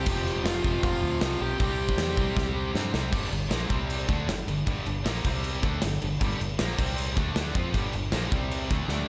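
A straight, driving 4/4 groove propels this swaggering, anthemic hard rock excerpt. Up front, a big acoustic drum kit with a punchy kick and medium-tuned snare hits crash, hi-hat, kick and snare, with a fill leading into the second section at 3.1 seconds. A fingered electric bass sits warm and foam-muted underneath. Three bright, picked rhythm guitars sit in the background churning out a riff over F5, C5 and G5 chords: one is compressed and scooped, one is double-tracked with overdrive, and one is high-gain with slapback echo. A dark, bluesy overdriven lead guitar, soaked in distortion, slapback echo and analog delay, plays a brief melody that stops at 2.7 seconds, all in a lightly reverberant studio room.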